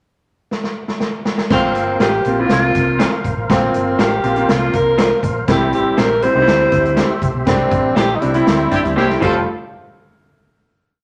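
Driving straight 4/4 at 121 BPM, a swinging big-band drum kit opens the pickup bar with a fill from 0.5 s, its punchy kick, medium-tuned snare struck on all four beats, hi-hat and crash sitting up front in a big, natural room. This uptempo 1960s-style soul piece is uplifting and danceable, moving from Bbsus2 to C in a pre-chorus before landing on Fadd9 and a final hit. Up front, a breathy tenor saxophone carries a motif-based, jazz-style melody with soft attack, scooped notes and light vibrato, while a clear concert grand piano pushes close-voiced chords with grace notes and long sustain. Underneath, a round, dark hollow-body bass plays a melodic, syncopated line with slides and chromatic approach notes, and a mellow tonewheel organ holds a sustained pad in the background through chorus vibrato and a slow rotary speaker. A slightly broken-up, lo-fi guitar through a small old amp adds short chops on the backbeat, and near the close a tight, vintage horn section punches the phrase end as a clean, tube-saturated guitar slips in a brief fill in sixths, all wrapped in moderate studio reverb.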